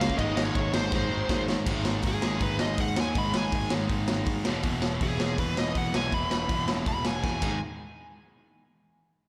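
A rowdy, energetic punk rock clip at 162 BPM kicks off with a raw garage drum kit up front, its punchy kick, medium-tuned snare and cymbals sounding gritty and saturated in a pumping small room. Alongside it are a growly fuzz bass, a bright cranked stack guitar with overdrive and slapback echo, and a very quiet overdriven rhythm guitar also playing the riff over Ab5 and E chords, while a bluesy, distorted lead guitar with slapback echo plays from the start. After a drum fill at 0.9 s, the lead guitar takes a solo from 1.7 s, all set in a big arena sound with concert hall reverb. A second fill closes the passage before the instruments fall away by 7.6 s.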